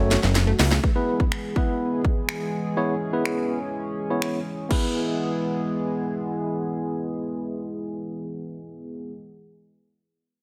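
Carefree and euphoric, this 124 BPM dance-pop clip in E major opens with a house drum fill of punchy kick, cracking snare, crisp hats, finger snaps and crash, the kit continuing until 4.8 seconds, while a fat, saturated analog bass and a lush, detuned unison pluck with delay sound only briefly at the start. A clean tine electric piano accompanies and a shimmering, chorused pulse-width pad sustains chords over F#m moving to E through 9.1 seconds, both pumping from sidechain and softened by a low-pass filter in light reverb.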